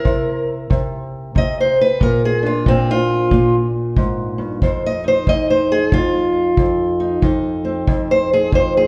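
An acoustic country blues excerpt opens on a fingerpicked steel-string acoustic guitar, its dark, boxy parlour tone sitting up front as it carries the melody across a range of F2 to Eb5. The mood is laid-back and soulful, moving at 92 BPM in 4/4 with a swung eighth-note feel. A kick drum joins at 0.1 s, tight and smooth with a rolled-off top, played with brushes in a small-room sound. The guitar's solo passage moves through C7, then Bb7 at 2.0 s, settling on F5 at 4.6 s. A wet recital hall reverb with a 1.7 s decay places the listener further back in the room, lending the short duo a spacious, reflective air.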